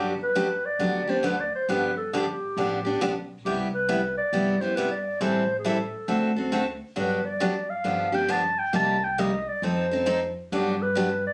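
Clarinet, guitar and upright bass all sound together from the start of this short, playful cut from a longer piece of lively acoustic string swing in the jazz manouche style, with a swung eighth-note feel. The mellow clarinet carries the melody up front in a vintage jazz style, its subtone colored by light vibrato and scooped notes. Beside it, a picked steel-string dreadnought guitar supplies bright, full-bodied accompaniment on fresh strings, with an audible finger squeak. The pizzicato upright bass sits lower in the mix, woody, dark and growly with a thumpy attack. The harmony moves from Gmaj7 through G7, Cmaj7, Am7 and D7, later passing through Cm7 and F7 before settling on Gmaj7 at 10.5 seconds. Captured on a phone in a studio room, the sound carries a moderate reverb and the natural ambience of the space.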